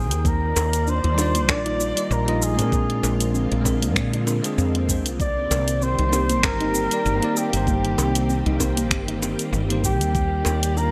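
A bright, 1980s-style digital production with light reverb frames this relaxed, smooth sunset chillout excerpt in C minor, moving at 97 BPM in 4/4 with a gentle 16th-note swing. A mellow, distant flugelhorn carries the melody in a jazz solo style, its soft attack, vibrato and scooped notes trailed by delay, while a silky, warbling string machine holds slow-blooming chords under an ensemble chorus. Up front, a woody, hollow-bodied fretless electric bass sits dark and punchy, and a bell-like tine electric piano enters at 1.1 seconds with clean accompaniment touched by delay. The rhythm comes from a produced R&B kit of finger snaps, hi-hat and shaker alongside a knocking electronic kick, both tape-tinged and dressed in studio reverb, with tight, high-tuned bongos struck by hard hands in the background. A very quiet, round pluck adds decaying arpeggios beneath it all as the harmony drifts from Ebmaj9 through Bb9 to Cm7 and back to Ebmaj9 at 10.1 seconds.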